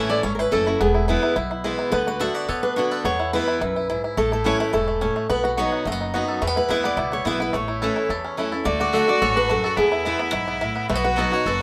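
A warm, fresh-stringed picked acoustic guitar carries the melody up front in this lively, joyful bluegrass excerpt, joined by a twangy, percussive fingerpicked banjo line, a full-bodied second guitar picking the accompaniment, and a woody, thumpy pizzicato upright bass, and a clear, intense fiddle with light vibrato and an airy bow adds a second line from 8.6 seconds, all in a moderate studio ambience.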